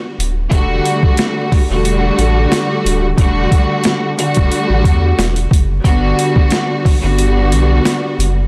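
Boom-bap hip-hop at 90 BPM with a lightly swung 16th feel, this nostalgic fragment of a longer piece sets lush, woody bowed strings with vibrato, filtered and up front, over a round, deep sine sub bass and a gritty, pitched-down sampler drum kit whose thumpy kick, high-tuned snare and hi-hat are overdriven and compressed, moving from Gmaj7 to Em11 and back to Gmaj7 at 5.8 seconds in a dry, densely limited mix coated in vinyl crackle.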